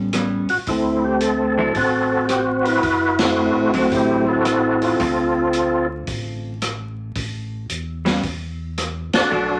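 Swinging and bluesy, this short soul jazz organ trio cut sets a gritty, overdriven tonewheel organ melody up front with slow rotary speaker and chorus vibrato, running from 0.5 to 5.9 seconds and returning at 9.1, over a round, mellow tonewheel organ bass with key click, a dark, compressed hollow-body jazz guitar comping through A9, D9 and Dm7 chords, and a vintage drum kit with punchy kick and rim click, all in a short, wet studio reverb dusted with vinyl crackle and punctuated by band accents at 3.1 and 9.1 seconds.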